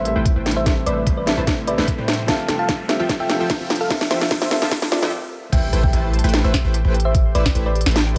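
Dreamy and emotional, this future bass piece at 148 BPM in half-time A minor moves through Am7 and Fmaj9 as a round, tine-like thumb-piano-like synth pluck carries the melody with chorus and delay, a felt-muted upright piano with audible action noise and an airy breathy pad sit softly in the background, and a detuned supersaw stab pumps through a filter sweep while a faint riser climbs from 1.1 seconds. The trap drum kit's crisp hats, sharp snare and crash cymbal join a knocking electronic kick and a boomy 808-style bass until a brief stop at 5.1 seconds, and at the drop at 5.5 seconds a bright, ringing Celtic harp plays arpeggios in the background alongside a barely audible impact.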